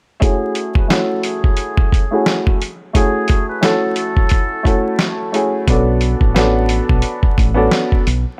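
A dusty, sampler-style drum kit sets a swung boom-bap groove at 88 BPM in 4/4, its thumpy kick, medium-tuned snare and hi-hat sitting compressed and gritty up front from the start. This short cut from a longer hip-hop piece sits in F# minor with a dark, tough mood, opening on an F#m9 chord that moves to Bm9 at 5.7 seconds. A clear, woody upright piano, worn and slightly detuned, plays filtered accompaniment until 8.0 seconds, while a muted trumpet with a metal mute adds a brief jazz-style melody, buzzy and thin with light vibrato and a soft attack, that stops at 4.9 seconds. A deep dub fingered electric bass, round and dark with transformer saturation, enters at 5.7 seconds low in the register. The whole is a dry hardware recording flecked with vinyl crackle, with a filter sweep running across the entire passage.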